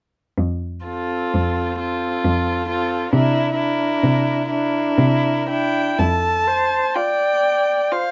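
In a rubato 3/4 at 57-68 BPM, this tender, slow romantic movement for string quartet in F major opens with a veiled, up-front cello bass with light vibrato at 0.4 s, joined at 0.9 s by a close first violin melody with vibrato, an up-front second violin line with vibrato and portamento, and a soft-attacked viola accompaniment with vibrato and a smooth top, all four players muted and dark in tone under light reverb, with the cello stopping at 6.8 s as the harmony moves from F through C9 and back to F in this short cut from a longer piece.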